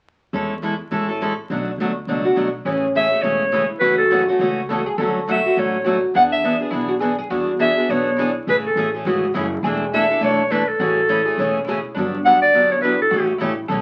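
Playful and lively, this fragment of jazz manouche swings at 206 BPM in A major, with a bright, boxy parlour steel-string guitar picking the chords up front and a dark, thumpy gut-string upright bass plucked beneath it from 0.3 s, a deep, woody fretless oud adding a double-strung second line from 2.7 s, and a breathy clarinet with light vibrato and subtone taking the present, jazz-style solo melody from 3.0 s, all heard through wet studio reverb and the crackle of a very old 78 rpm record.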